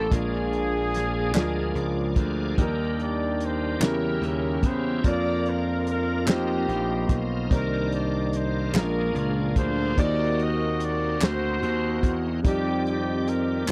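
Slow gospel in 6/8 at 49 BPM in Bb major, jubilant and reverent, where a warm horn section carries the melody up front with slapback echo over a gritty, overdriven slap bass, a dark soul drum kit, a mellow baby grand piano in the background and a shouting tonewheel organ with slow rotary speaker holding chords, adding a fill from 1.3 s as crisp group handclaps enter, all in a dry, close 1970s-style studio sound cut from a longer piece.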